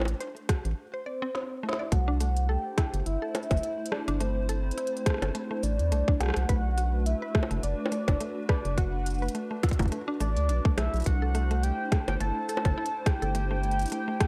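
A lightly swung 105 BPM groove of overdriven, up-front electronic kick and an organic electronic kit of woody snare, crisp hats, bongos, cabasa and rim click drives this glitchy, intricate IDM excerpt in C lydian, where a deep, round analog bass sits underneath, a hollow, flute-like pad holds warbling sustained chords, a bright, mallet-like FM pluck spins arpeggios roughened by 12-bit grit and digital delay, and during a short break from 0.8 to 1.9 seconds a velvety, tremolo-tinged synth lead with cassette-tape echo enters at 1.1 seconds to carry the melody.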